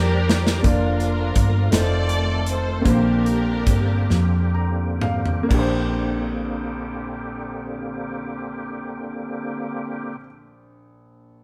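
Slow, hopeful and reverent gospel in 6/8 and B-flat major, cut from a longer piece, where a lush bowed string section carries the melody until 4.5 seconds over a clear, deep-voiced concert grand piano, reedy tonewheel organ chords with key click and fast rotary speaker, a round, dark hollow-body electric bass up front, and a punchy, polished drum kit whose fills open the passage and return near 4.1 seconds alongside a piano fill as the tempo slows, all played live together in a moderate stone room before the piano closes alone at 11.4 seconds.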